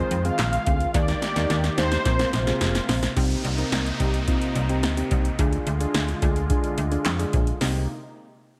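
Driving yet melancholic, this short synth-pop fragment moves in a straight four-four pulse over minor-key chords that pass from Fm7 through Eb and Bbsus2 before settling on Cm7. A brassy, detuned synth brass carries the melody for only the first 2.8 seconds, its tone colored by chorus, phaser and delay, while round, gentle electric-piano-like keys and a smooth, sustained analog pad with chorus fill in the harmony beneath. Up front, a snappy FM bass with a metallic attack pairs with an overdriven analog drum machine built from a deep kick, punchy snare, handclaps and hi-hat, which plays a drum fill from 0.9 to 3.2 seconds. At 3.2 seconds the music shifts into a new section over Cm7 and Ddim, and an electronic downlifter sweeps in beneath the texture. Light reverb and a digital ambience surround the whole.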